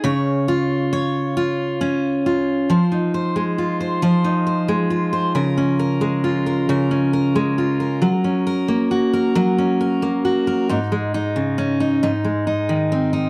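Romantic and tender, this brief pop fragment in Db major moves at a slow 45 beats per minute in a straight 6/8, carried entirely by a solo picked steel-string acoustic guitar with a full-bodied dreadnought tone sitting up front in a dry, close 1970s-style studio sound with a touch of reverb. After an opening Db chord, the harmony turns at 2.7 seconds through Fm7, Db6 and Gb before settling on an Absus4 that resolves to Ab at 12.0 seconds, the guitar ranging from Ab2 up to Db5 across this short cut from a longer piece.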